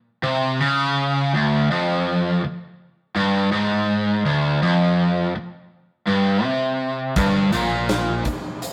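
A cranked stack guitar leads this gritty, raunchy slice of blues rock power trio and southern rock, its bright, overdriven, double-tracked riff sitting up front from 0.2 seconds and moving from an unaccompanied opening onto a Dm7b5 chord at 1.3 seconds. The tempo is a straight 82 BPM in 4/4, and the passage is cut from a longer piece. At 7.2 seconds the harmony shifts to Gm as a picked electric bass, growly and amped, slips in low in the background. A huge arena drum kit arrives at the same moment with hi-hat, punchy kick and medium-tuned snare, placed up front with a pumping hall character. A moderate stone room reverb and warm saturation give the whole take the rough feel of a rehearsal-room recording.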